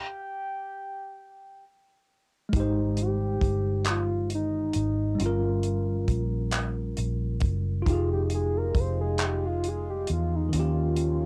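A slow six-eight R&B groove at 45 BPM, in a late-night, yearning mood, opens with a soft, octave-layered synth lead carrying the melody alone with a round, chorused tone before dry, damped 70s drums with handclaps, hi-hat and a tight kick arrive at 2.5 seconds alongside a dark, foam-muted fingered bass, both up front. A worn, slightly out-of-tune tine electric piano with light overdrive fills out the chords moving from Abmaj7 through Gm7b5 and Fm9 to Eb9, and a distant, mellow French horn section slips in with sustained chords at 7.9 seconds. The whole excerpt has a dry cassette home-recording character.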